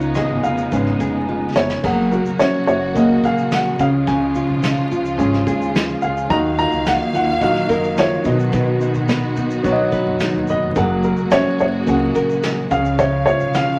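This easy-going acoustic pop excerpt opens with the full band at 108 BPM in F# major: a dark, mellow upright piano carries the melody up front with short-sustained, woody notes and audible action noise, over a small-sounding fingerpicked nylon-string guitar and a second, intimate upright piano in accompaniment. Lush bowed strings with vibrato and portamento hold sustained chords, while a thumpy pizzicato upright bass on gut strings and a brushed kit with dark cymbals and a tight kick keep a straight, carefree 4/4, with a drum fill at 1.3 seconds leading into a progression moving from F#add9 through C#, D#madd9 and B. Studio reverb and a layer of vinyl crackle wrap the sound, giving it a cosy, nostalgic air.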